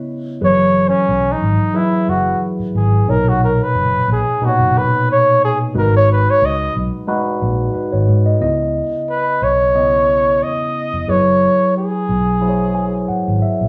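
Silky and smooth, this lush 1970s-style soul passage with a gentle 16th-note swing sets a breathy, jazz-style flugelhorn solo with light vibrato and scooped notes up front over a mellow, phaser-tinged tine electric piano and a dark, round, foam-muted fingered electric bass, all in a live-room sound with a moderate studio reverb, before the electric piano adds a fill at 12.4 s.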